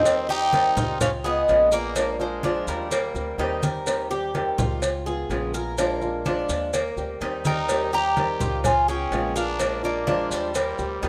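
A picked, metallic Cuban tres carries the melody from the start, joined by a raspy, growling trumpet with tape echo in phrases at 0.0 and 7.5 seconds, over fingerpicked flamenco guitar, a second tres playing arpeggios, woody pizzicato upright bass, bright low-tuned congas, a tight high cowbell and grainy maracas in this relaxed, sunny Cuban son and guajira excerpt at 126 BPM in Eb major, cycling through Eb6, Db7 and Bb7 with light small-room reverb and a rough home-demo feel.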